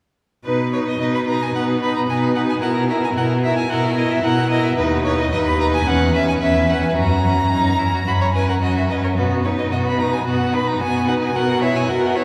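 A smooth, distant-sounding violin opens the second line at 0.4 s, and almost at once a focused first violin takes the melody while a warm viola with expressive portamento fills the accompaniment and a soft-attacked cello, set up front, carries the bass. This quick, cheerful and graceful classical-period movement for string quartet has every bowed player singing with vibrato, its harmony moving through a series of changes until the cut at 12.2 s. The quartet sits in the long, wet bloom of a cathedral-like space, so each chord lingers in the reverb.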